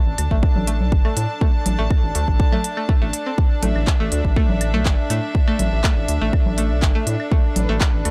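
A straight, steady 4/4 pulse drives this short cut from a longer minimal techno piece, its mood clinical and hypnotic. A punchy, layered electronic kick sits up front from 0.3 seconds, just after a minimal click drum kit of handclaps and clicky hats that sounds re-recorded in a small room, while claves and congas with analog delay sit dry in the background. A rubbery, hollow square-wave bass, dark and bouncy with a wave-folded edge and a fast filter pluck, holds the low end up front and pumps against the kick through sidechain compression. Over it, a twangy, string-like resonator pluck repeats a short riff from the very start, bright and warbling through chorus, phaser and tape echo. Above the riff, a rich chamber string section bowed with light vibrato supplies an earthy, smooth-topped texture that also breathes with the sidechain pumping, sustaining a single suspended chord throughout. 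The overall sound is a gritty hardware recording with transformer saturation set in a digital ambience.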